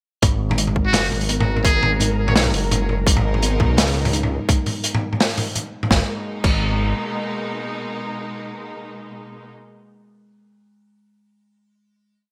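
A cinematic, spacious half-time drum and bass piece opens at 0.2 seconds with the whole groove at once: a crunchy, gritty breakbeat kit with dark cymbals and a medium-tuned snare, a hard-clipped, overdriven electronic kick, and a deep, rumbling detuned saw bass holding long, beating notes up front. Behind them, a woody, hollow kalimba with vintage 12-bit sampler grit and digital delay plucks a mellow 12-step arpeggio loop that drifts against the bar, and from 0.8 seconds a flickering, granular high note lingers in the background. At 0.9 seconds a buzzy, thin trumpet with a metal mute enters with short jazz-style phrases, its scooped notes and vibrato set present and bathed in delay. Midway through, a lush, bowed string section enters as a sustained pad with sidechain pumping. The drop gives way at 5.9 seconds to a final chord carried by the strings, all wrapped in bright 1980s-style digital production with light studio reverb.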